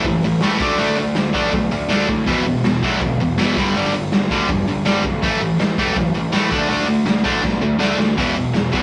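Distorted electric guitar, fuzz bass and a raw garage drum kit all play together from the start of this short, rowdy punk rock fragment, which moves in a straight, energetic 4/4. Up front, the double-tracked guitar drives an overdriven, picked riff through power chords on A, D, E and G. Beneath it, the picked electric bass sits in the background with a growly fuzz tone. The acoustic kit of kick, snare and hi-hat sounds gritty and saturated, with a punchy kick, a medium-tuned snare and a rolled-off top in a stone room. A drum fill arrives at 7.4 seconds, just before the riff returns to E. The whole take has the rough, dull-edged feel of a rehearsal-room recording with light reverb.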